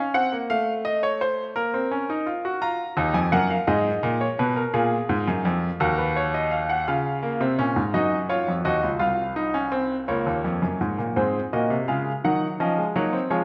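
Serious and driving, this brief baroque-style fugue in four parts unfolds on a clear grand piano in a straight 6/8. The piano sits present and up front, spanning from deep bass to bright upper register, while a wet recital-hall reverb lends the counterpoint a spacious bloom. The harmony moves steadily through chords in E-flat minor before shifting into a new section at 11.2 seconds and settling back home as this fragment of a longer piece closes.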